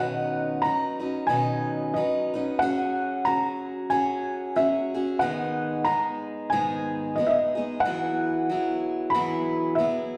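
A felt-muted upright piano carries the melody, its tone soft, mellow and intimate as it sits up front in the high register, from D#5 to B5. Beneath it, a picked steel-string guitar with a warm parlour character supplies the accompaniment, ranging from G#2 to B4 and also placed up front. This acoustic folk piece for a duo or small band moves at 92 BPM in 4/4, with a gentle 56% swing on the eighth notes and a hopeful, nostalgic mood. In B major, tuned slightly low to A4 = 438 Hz, the harmony moves through Badd9, F#sus2, G#m and Eadd9, each chord lasting about 2.6 seconds. A wet, large studio reverb with a 1.2-second decay gives the sense of hearing the room from further back. Both instruments play together from 0.0 to 10.2 seconds in this short passage cut from a longer piece.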